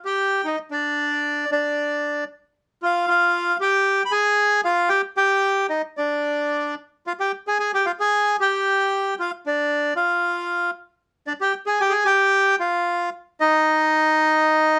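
A lone bandoneon opens this short tango fragment, its reedy, dark tone placed up front and mid-forward in a studio room with moderate natural ambience. The playing has a free, rubato feel that gives the line a playful yet nostalgic character, moving between D4 and B5. Harmony drifts in and out: the opening bars are unharmonized before an Fmadd9 colour arrives at 2.8 seconds, followed by Eb. After another open, chordless stretch, the instrument settles onto Dm at 9.2 seconds, then a bare G5 before closing on single-line playing again. Cut from a longer piece, the fragment spans just under 15 seconds and feels like an intimate, wistful solo passage.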